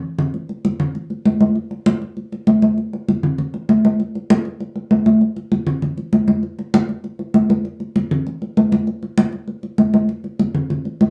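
Sophisticated and lively, this straight-feel jazz fragment at 197 BPM in 4/4 opens on a brief drum fill before bright, high-tuned congas with a thin skin and soft hands sit up front from 0.2 seconds, their vintage, band-limited tone carried by a live, wet studio room through to the cut at 11.1 seconds.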